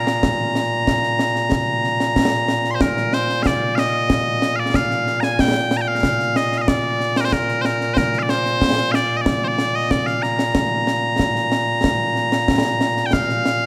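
A straight 4/4 pulse at 93 BPM carries this stirring, proud Scottish pipe tune in Bb major, where loud, piercing bagpipes hold the melody up front from Bb2 to C6 while close, dry concert snare and bass drum with dark cymbals keep time beneath, all set in a moderate concert hall reverb across this short cut from a longer piece.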